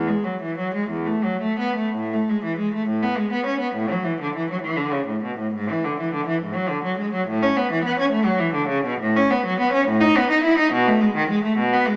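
Classical, baroque-style suite movement for unaccompanied cello in A major, moving in a dance-like, serene 6/8 at 68 BPM in dotted quarters with uneven beats and rubato, cut from a longer piece. A single bowed cello carries the whole 12 seconds alone, its clear, smooth, even tone with vibrato ranging from E2 to E4 and sounding up front yet distant. A wet recital hall reverb surrounds the playing, heard through a small-speaker sound.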